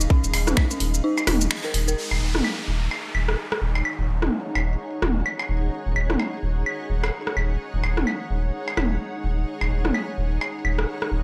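A clinical, sparse minimal techno excerpt at 128 BPM in Eb minor, built on a deep, saturated sub bass and a cloudy, evolving granular pad that both pump against the sidechain throughout, with a tight, up-front electronic kick, a garage kit of finger snaps, hi-hat and shaker, and a very quiet pulsing gated texture filling the opening two seconds. An eerie, inharmonic FM bell riff with chorus, phaser and digital delay sounds from 0.1 to 1.9 seconds, and the kick drops out at 1.0 seconds before a band accent at 1.5 seconds. From 2.0 seconds the music settles on Ebm, leaving the sub bass, pad and a small-room click kit of claves, rim clicks, blips and toms, while an electronic downlifter sweeps through until 5.7 seconds.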